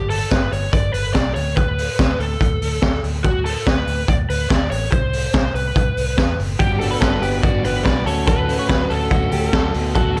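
Dry, gritty and cut from a longer piece, this breezy, bright jangly indie pop track opens with a lo-fi overdriven lead guitar melody over a round, foam-muted vintage bass and an up-front garage drum kit with a boomy kick and high-tuned snare, until at 6.6 seconds a dark, hollow-bodied overdriven semi-hollow guitar and a twangy, clean direct-recorded electric guitar playing arpeggios join in.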